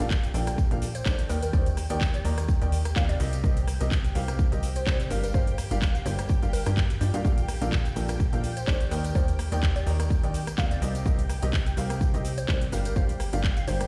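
A punchy, up-front electronic kick drives this joyful, euphoric piano house cut at 126 BPM in 4/4, with a light 16th-note swing from a house kit of metallic hats, handclaps, cabasa and rim clicks, plus a compressed tambourine tucked in the background. A woody upright piano carries the riff with audible action noise and tape echo, while a funky, plucky analog bass with a fast attack sits low beneath it, both pumping with the sidechain along with a silky, detuned string pad that holds sustained chords in the background. From 0.9 seconds a glassy, crystalline wavetable pluck adds a chorused melody with tape echo, and a barely audible impact marks the opening 1.5 seconds. The harmony cycles through Bbmaj7, Ebmaj7, Cm7 and Gm7 twice across this excerpt, which is cut from a longer piece. The mix is dry, yet carries the character of a big sound system playing in a bare stone room.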